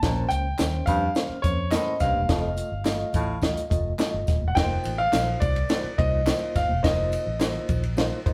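An uplifting, joyful uptempo 1960s-style soul groove in F mixolydian at 106 BPM opens with a clear, up-front concert grand piano carrying the melody over a reedy, lightly overdriven electric piano with fast tremolo, a round, foam-muted electric bass, a punchy, dry cocktail drum kit with a high-tuned snare and dark cymbals, and quiet, high-tuned congas, while a baritone saxophone riff with scooped notes and light vibrato drops out at 3.4 seconds and a background tambourine and group handclaps join at 0.3 seconds, all sounding like a band playing live in one room with a wet studio reverb.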